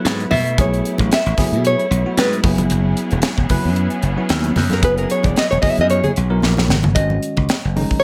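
Electric jazz fusion at 113 BPM with a light sixteenth-note swing and a nocturnal, driving mood, cut from a longer piece and moving through suspended ninth chords before settling on G#7sus4 at 7.0 seconds. A fingerpicked nylon-string guitar with slapback echo carries the melody as a solo with audible finger squeak, over a punchy, bright slap bass and a crisp, polished drum kit with a high-tuned snare and tight kick that plays a fill just before the 7.0-second mark. A bell-like electric piano with subtle chorus comps throughout, while thick-skinned congas and a smooth, bowed string section with vibrato sit in the background, the strings dropping out at 6.9 seconds, all in a small room with light reverb.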